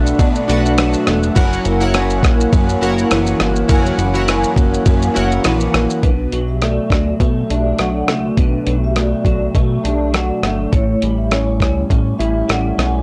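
A lightly swung 16th-note groove in 4/4 drives this mellow, hazy slice of indie bedroom pop, anchored by a dusty, sampler-style drum kit with a thumpy kick, hi-hat, ride, rim click and shaker, all carrying a gritty 12-bit character up front. A slightly broken-up electric guitar through a small old amp, treated with ensemble chorus and vibrato, sits beside a glossy, detuned synth bass and bright chorused retro synth keys over Bm7 and F#7 chords until the keys drop out at 6.1 seconds. From 6.0 seconds a metallic, ringing vibraphone with fast motor vibrato, analog chorus and delay takes up a soft second line as the harmony returns to Bm7 and later moves to A7, all in a dry, lo-fi hardware sound with light reverb.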